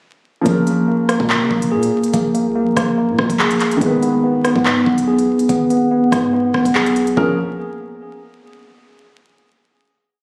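A dark, intimate baby grand opens at 0.4 s with held, openly voiced chords and audible action noise, joined almost at once by a clean tine electric piano playing a looped eighth-note arpeggio through delay, up front in the mix. This menacing half-time drill track rests on an electronic kit with a knocking kick, crisp skipping hi-hats, handclaps, rim clicks and toms, while a deep sine 808-style bass holds long sub notes that follow the kick, with pitch slides. The hook gives way to a final chord at 7.2 s, and the whole short piece carries light reverb, vinyl crackle and the sound of a phone recording in the room.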